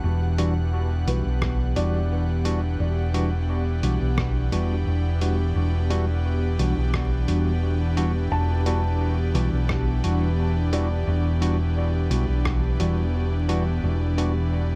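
Set in a straight 4/4, this hazy, deep ambient dub fragment, cut from a longer piece, rests on a single Em9 chord throughout its roughly 15 seconds. The hollow-body short-scale electric bass sits up front with a round, dark, amped tone, holding the low end from the first moment. A lo-fi sampler-style kit of hi-hat and rim click enters at 0.4 seconds, muffled and tape-warm, touched with studio reverb and dub echo, while a very quiet, overdriven electronic kick joins at 1.4 seconds. Over this, an airy, breathy pad with a slow attack and chorus holds sustained chords, and a felt-muted upright piano plays mellow arpeggios in the background, its action noise audible beneath a dub echo. A barky, bell-like tine electric piano adds bright, clean stabs that also trail off into dub echo. The production is dark and warm with little reverb overall, and a layer of vinyl crackle deepens the hazy atmosphere.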